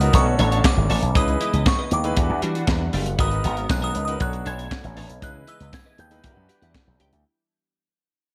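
Late-night and slick, this early-eighties boogie funk clip rides a straight 4/4 groove as it fades out over its full 7.3 seconds, cycling through lush minor-ninth chords from Bm9 to C#m9, Em9 and G#m9. Up front, a tight funk kit with a punchy kick, high-tuned snare, hi-hat, handclaps and gated reverb drives the beat alongside a bright, punchy slap bass pushed through an envelope filter. Above them, a glassy, crystalline FM synth bell carries the melody with chorus and tape echo, while a brilliant concert grand piano, a clean, compressed semi-hollow guitar riff with ensemble chorus, and a very quiet, smooth detuned analog pad fill out the polished studio sound.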